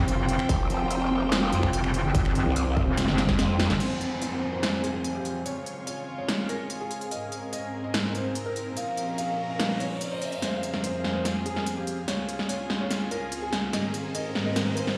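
A half-time pulse drives this heavy wobble dubstep fragment, cut from a longer piece, chaotic and menacing from the first beat. It opens straight on the drop, where a metallic wobble bass and a growling, formant-filtered bass, both overdriven, chorused and pushed up front, surge over a punchy, overdriven electronic kick, while a tape-warm big-room dance drum kit with crisp hats, a punchy snare, finger snaps and crash cymbal carries on throughout. Beneath them a rich string section with a reedy, period gut-string tone holds sustained chords through 12-bit sampler grit, a low-pass filter and sidechain pumping, and a blurred granular cloud pad drifts in the background. At 3.8 seconds, after a drum fill and a band accent, the basses drop out and a felt-muted upright piano takes the melody, intimate and mellow with audible action noise, softened by a low-pass filter and digital delay. A downlifter and riser sit in the background as the harmony moves through Fm, Db, Abadd9 and Bbm, and the final stretch from 10.4 seconds becomes a build-up with a drum fill and rising effects. 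The whole mix carries a stone-room reverb, as if played on a big sound system in a bare room.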